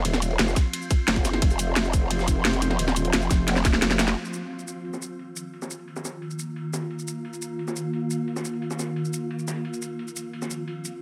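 Lightly reverberant digital ambience frames this futuristic, aggressive cut of dark technical drum and bass, running at 175 BPM in a straight 4/4 and tuned to A4 = 441 Hz. Up front, a swarming, warbling drone holds sustained chords in unison with a slow attack, long release, granular texture and its own built-in reverb, pumping against the sidechain, while a growling, wobbling, detuned bass with chorus and tube saturation snarls beneath it until the band accent at 4.1 seconds. The drums are layered: a produced electronic kit with a cracking snare, bright hi-hats, ride, shaker and overdrive sits forward alongside a tight, overdriven electronic kick, while a gritty, tape-warm sampler-style breakbeat kit with a medium-tuned snare and filtered ride sounds from a small room in the background. The opening drop ends in a drum fill as the kick falls away, and from 4.2 seconds a filter sweep moves across the drone while the harmony shifts from F5 to Eb5. 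The harmony returns to F5 at 9.6 seconds, and the passage is cut from a longer piece.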